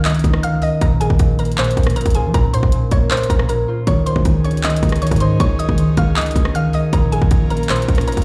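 Wistful and dreamy, this short excerpt from a longer trap and hip hop piece moves at 157 BPM in 4/4 with a half-time feel, set in Db major over chords that shift between Dbsus2 and Bbm. A woody, round synth pluck with a mallet-like, FM-built tone carries the melody high in the register, its mellow, fast-decaying notes colored by chorus, phaser and digital delay. Beneath it, an acoustic concert harp supplies fingerpicked, ringing accompaniment, while a punchy, heavy 808-style bass with a sine core and a fast attack anchors the low end. The electronic trap kit sits up front with a hard-clipped kick, bright hi-hats, handclaps and rim clicks, all pushed through overdrive. At 3.9 seconds an airy, breathy pad with a slow attack and long release slips in softly underneath, adding a gentle chorused haze. The whole mix carries light reverb and the sense of a big sound system playing in a bare room with a large studio reverb.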